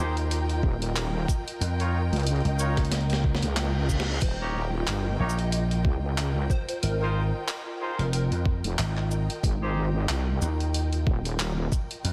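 Glitch hop with a funky, gritty swing, this excerpt sets punchy, round slap bass and a heavy, saturated wobble bass up front beside a thumpy, compressed electronic kick, while a sampler-style boom bap kit with a high-tuned snare, handclaps, shaker and hi-hat plays through a large-room sound. Vintage horn stabs with tape echo and sidechain pumping ride over a lush, bowed string section that also pumps, as the chords move from Abmaj7(no3) through Db69, Eb7 and Fm7. A drum fill and a background reverse cymbal lead into a bright, catchy square-wave lead with tape echo, heard from 4.2 to 8.3 seconds, all set in light digital ambience.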